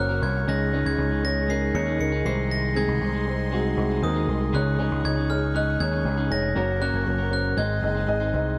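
Piano-driven pop with an anthemic feel, cut from a longer piece, where a sparkling glockenspiel struck with hard plastic mallets carries the melody over a soft, felt-muted upright piano, a clean, compressed electric guitar riff, lush bowed strings sitting in the background, and a growling, overdriven picked bass pushed up front, all set in a small, lightly reverberant room as the chords move from Dbsus2 through Ab/C to Gb and Ab.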